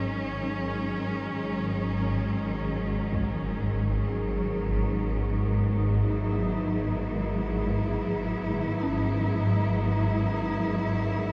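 Bathed in a huge, wet reverb, this desolate dark ambient drone drifts in free time, built on a swarming, tense, granular drone that sits up front beside a lush, bowed symphonic cello section holding expressive sustained chords with vibrato. A very quiet, eerie FM synth bell adds inharmonic arpeggios with chorus, stopping at 3.1 seconds and returning at 8.8 seconds. At that 3.1-second mark a bright, very quiet impact sounds as the harmony moves from a G#7 chord with its third omitted to C#m/G#.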